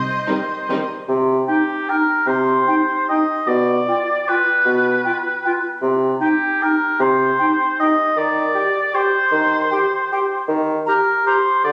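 This short excerpt of an elegant, sweeping orchestral ballroom waltz in C minor opens with a lush symphonic violin section holding the melody on Eb5, heard only until 0.9 s. Beneath it, a warm, up-front oboe carries a second line that continues to the end. Between 0.3 and 0.8 s, a chamber violin section with expressive portamento and a symphonic viola section with intense vibrato add a brief flash of bowed ensemble colour. From 1.1 s, a distant, roomy bassoon takes up the accompaniment, and soon after a mellow, vintage-toned clarinet and an airy, metallic concert flute join with their own second lines. The waltz moves at 154 BPM in 3/4 with uneven beats and rubato, its harmony passing from C minor to a rootless G7 over B and back to C minor. A wet scoring-stage reverb surrounds the ensemble, which sounds as though it was captured on a phone in the room, with a club-like reverb.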